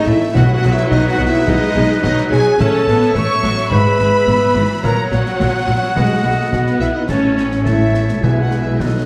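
A dark French horn section carries sustained chords through this triumphant, adventurous passage of heroic film score, its soft-attack tone sounding distant and roomy. Above it, a close, intimate chamber violin section sings the melody with vibrato. Around that melody, a clear solo oboe, a mellow, hollow concert flute, a clarinet and a very quiet, smooth-topped symphonic violin section each add a second line. Lush violas with portamento and vibrato fill the accompaniment in the background, while cellos and woody double basses hold the bass from 0.1 seconds, and a very quiet concert harp rings out in fingerpicked arpeggios. Snare drum, bass drum and bright clash cymbals join in the background at 0.4 seconds, and very quiet timpani with medium mallets play from 0.4 to 1.2 seconds and again from 6.0 to 8.8 seconds. The short excerpt moves through a B, A, E/G#, F#/A# progression, bathed in a generous scoring-stage reverb and a dark, warm production.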